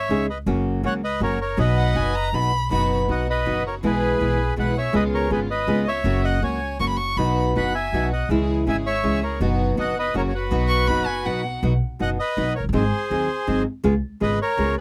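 A dark, reedy bandoneon carries the melody over a thumpy, pizzicato upright bass and a small, fingerpicked nylon-string guitar in this playful, elegant tango excerpt in 3/4, played with a rubato feel. A solo bowed violin adds brief second-line phrases with vibrato and portamento at 1.8, 6.8 and 10.7 seconds, and a rich chamber string section with gut-string tone plays stabs in the background from 2.7 to 11.6 seconds. Close, detailed miking and little reverb keep the sound intimate.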